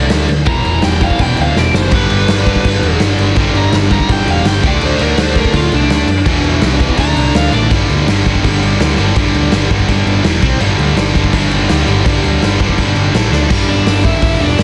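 A dense, heavily limited modern master with little room sound gives this rebellious, upbeat punk rock clip a blunt, in-your-face punch. Up front, the raw garage drum kit is saturated and gritty, with a punchy kick, a medium-tuned snare, crash, hi-hat and splash cymbals, and a rolled-off top set in a bright stone room. A growly, amped, overdriven picked electric bass drives underneath, while a tight distorted guitar churns out riffs in the background alongside a double-tracked high-gain distorted guitar that sits very quiet. After a short drum fill, a further overdriven electric guitar joins the riffing at 1.9 seconds. The biting overdriven guitar carries a warm, picked solo melody over it all until 7.7 seconds, then breaks off and returns briefly at 13.7 seconds.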